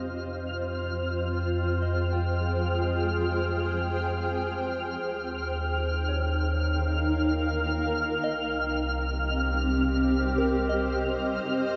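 A cloudy, blurred granular pad sits up front from the first moment, holding detuned, full-bodied chords over a round, deep sub bass. A twinkling, sparkling granular texture floats high above, while a soft, pure FM bell fades in through the whole passage with gentle arpeggios in the background, colored by chorus, phaser and delay. This serene, melancholic ambient fragment in 3/4 moves from Fm7 to Eb7 at 5.0 seconds and Cm7 at 8.2 seconds, all bathed in a huge, wet reverb.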